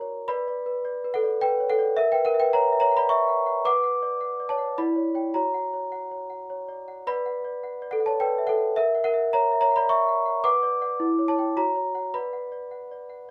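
A large solo celesta, bell-like and airy with the bright ring of hard felt hammers, sits up front in this wistful, fragile classical lullaby in B minor, moving at 106 BPM in a straight 3/4 and circling between B minor and F-sharp harmonies in a moderate studio ambience across a 13.3-second passage cut from a longer piece.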